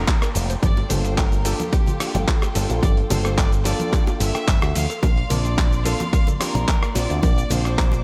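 A noise sweep opens this sensual, groovy nu-disco piece in G minor at 109 BPM, under a biting, earthy chamber violin section carrying the melody with analog delay, a reedy, worn electric piano with overdrive and delay, lush symphonic strings holding pumping chords, a bright, clean direct-recorded guitar riff and a punchy envelope-filtered picked bass up front. A punchy, overdriven electronic kick drives a gritty sampler-style kit of cabasa, handclaps, hi-hat, ride cymbal and rim click, with hard-handed bongos and congas in the background. At 0.6 seconds a quiet, detuned sawtooth unison pluck adds arpeggios as the harmony moves from Bbadd9 to Gm9, then settles on Bbmaj9 at 5.0 seconds, all under light reverb.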